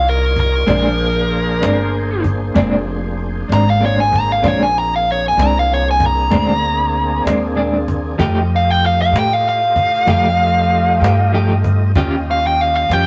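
A rough rehearsal-room recording with tube saturation and a moderate stone-room reverb gives this slow blues in 12/8 a raw, lived-in sound. This laid-back, swaggering cut from a longer piece is carried from the first second by an up-front, dark, smooth lead guitar, overdriven and picked, soloing across the whole stretch. Beneath it, a full, overdriven tonewheel organ holds thick, gritty sustained chords, its key click sitting inside a slow rotary speaker and chorus vibrato. A thumpy, steel-strung upright bass sits up front and plucked, while a cajon struck with hard hands adds an acoustic, woody pulse with faint snares. At 0.7 s a clean, picked electric guitar joins with accompaniment colored by tremolo, as the harmony moves through Eb9, Bb9 and F9 before returning to Eb9 at 12.0 s.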